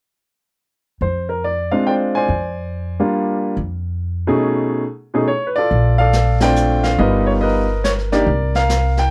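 Swinging and warm, this jazz piano trio moves in three-four time with a swing feel on the eighth notes. The baby grand piano carries the melody from 1.0 seconds, sounding natural and up front. Beside it, the upright bass is plucked pizzicato on steel strings, with a woody, growly tone that also sits close. At 5.7 seconds the brush drum kit enters, heard from a distance in a roomy studio space, with dark cymbals, hi-hat, ride and a medium-tuned snare played with brushes, all sitting well beneath the other two. The band hits a shared accent at 6.4 seconds over a Bbmaj7 chord, before the harmony moves to G7alt at 7.0 seconds, in a dry recording with little reverb that is cut from a longer piece.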